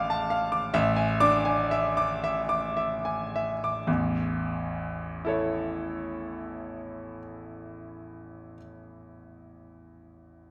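A classical, romantic character piece for solo piano, hopeful and passionate, moves in a slow, rubato 6/8 at 33-49 BPM in A major, where a clear, intimate baby grand with audible action noise spans A1 to D6, slows over the opening 3.9 seconds through Dm/A and E7/A before settling on A for the second section, and sits up front within a moderate large-studio reverb in this fragment cut from a longer work.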